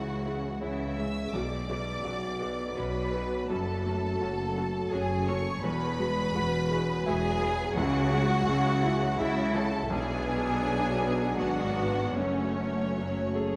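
A present concert grand piano, its action noise audible and its low notes ringing long, carries the accompaniment through this longing, bittersweet cinematic cue in 3/4 at 83 BPM, played rubato in B dorian. Lush, distant violins sing the vibrato melody over a more intense second violin line, while violas from 0.2 seconds, mellow French horns holding sustained chords, smooth cellos and a rich bowed double bass section fill out the orchestra. The harmony moves from C#m through Bmadd9, F#m and Eadd9, and the whole ensemble sits in a vast, echoing cathedral reverb.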